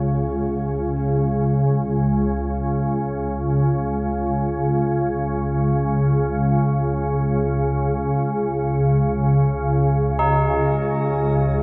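Soaked in a lush hall reverb with a cassette-tape haze, this cavernous, dark ambient drone drifts in free time as a brief slice of a longer piece. Up front, an organ-like drone of detuned sine tones warbles through ensemble chorus and a filter sweep, while tubular bells struck with a rawhide hammer ring out solemn arpeggios through shimmer reverb. Beneath them, a bronze singing bowl adds a barely audible, meditative, slowly beating metallic texture.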